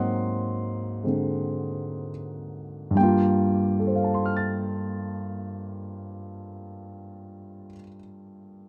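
A dark, mellow grand piano plays alone from the first moment, setting a cool, smoky solo jazz mood in G minor at a slow 73 BPM with a swung 4/4 feel, spanning G2 to A6. Its intimate, up-front sound carries audible action noise and a vintage character, sitting in a moderate studio reverb. An Ab9 harmony opens the piece before it settles onto Gm7 at 3.0 s, in a short cut from a longer performance.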